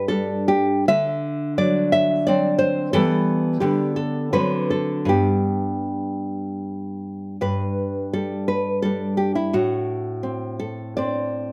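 A gently swaying 3/4 pulse, played with free rubato somewhere between 75 and 89 BPM, gives this short romantic solo for classical guitar a tender, sunny lilt in G major. The lone nylon-string guitar sits up front, its fingerpicked tone dark, moving between G2 and E5 as it outlines a simple progression of G, D7, Em, G/D, D7 and back to G. The opening phrase returns at 7.4 s, and the passage ends poised on a D7/A chord at 9.5 s before the cut closes at 11.5 s. Small finger squeaks along the strings add an intimate, human touch. Recorded outdoors, the sound is dry and close, with little reverb, and this brief moment is lifted from a longer piece.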